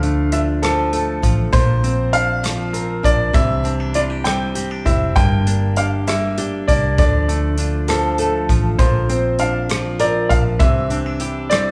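A clear, present baby grand piano carries the melody of this heartfelt, romantic pop ballad in six-eight metre, playing over the whole 11.7 second cut from a longer piece. Up front beside it, a fingerpicked flamenco guitar supplies the accompaniment with a bright, acoustic tone, its finger squeak audible. A clean electric guitar, recorded direct and compressed, adds twangy picked arpeggios further back in the mix, while a vintage fingered electric bass, foam-muted and amped, gives a dark, round and punchy low end. A natural country drum kit, airy and polished, sits up front and marks time with hi-hat, rim click and a punchy kick. The band plays live together in one room, bathed in a wet, large studio reverb, as the harmony moves from Dm through Bbadd9, Cadd9 and Gm before circling back.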